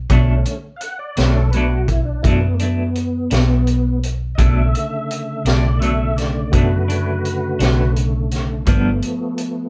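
Slow blues in 12/8 at 56 BPM in B minor, mournful and smoky, cut from a longer piece, where a clear tonewheel organ carries the solo through sustained chords colored by chorus vibrato and a slow rotary speaker, over a round, foam-muted fingered electric bass up front, a clean semi-hollow electric guitar accompaniment shimmering with tremolo, and a vintage drum kit with a punchy kick, high-tuned snare, hi-hat and a rolled-off top, all captured as a band playing live in one room with wet studio reverb as the harmony moves from Bm7 to G7 at 8.7 seconds.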